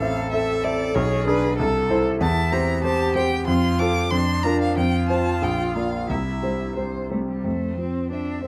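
In a lively 2/4 at 88-96 BPM with a flexible, rubato feel, this cheerful fragment of a quick classical-period movement for piano trio in F major moves from A minor colours toward F and B-flat before settling on an open F chord at 7.5 s. A focused, close violin sings the melody with vibrato, and a smooth, even cello carries a second line beneath it. The up-front concert grand, with its deep bass, supplies the accompaniment and sits loudest in a dark production with moderate studio ambience.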